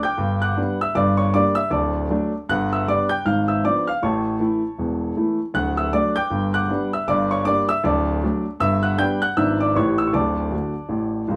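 A solo grand piano, boxy and up front, carries this playful, exuberant stride jazz passage from start to finish across its 11.4 seconds. The tempo sits at 157 BPM in 4/4 with swung eighths, and the music is in D major. The piano covers a broad span, from C#1 in the bass up to G6. Its harmony moves through Gmaj7, Gm, D and G, then a G#dim7 to A before settling on D. The progression then repeats, closing with a quick A7 into D at 10.1 seconds. A moderate club reverb gives the instrument a short room sound, and the passage is cut from a longer piece.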